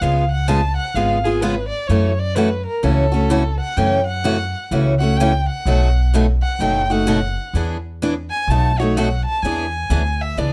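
A bowed solo violin carries this playful, swinging snippet of acoustic string swing in the jazz manouche style, its woody tone shaded with vibrato as it sings from 0.0 to 10.5 seconds. Beneath it, a bright, up-front picked steel-string acoustic guitar comps through changes such as C#7, F#m7, B7 and E7 in E mixolydian, with finger squeak audible, while a pizzicato upright bass on gut strings adds a dark, thumpy pulse. At 128 BPM with a lilting swing feel, the close, detailed sound and light reverb keep the trio intimate.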